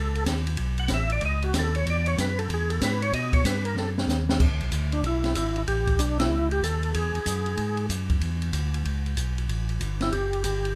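A gritty, overdriven tonewheel organ opens this greasy, bluesy soul jazz organ trio clip in E major, its percussive lead line carried on a slow rotary speaker with chorus vibrato and second harmonic percussion. Beneath it, a second tonewheel organ plays the bass from 0.0 seconds, fat and lightly overdriven with audible key click, also turning through a slow rotary speaker. The open jazz drum kit enters at 0.2 seconds, an acoustic studio-room sound with dark cymbals, a high-tuned snare and a boomy kick, and it closes the opening organ solo with a fill just before the band moves into a new section at 4.4 seconds. The swung tempo runs at 189 BPM in 4/4, with chords moving through B9, Eadd9, E7, A9 and E9, and the whole band hits an accent at 6.1 seconds. All three parts sit up front in light reverb, with some lossy compression artefacts in the sound.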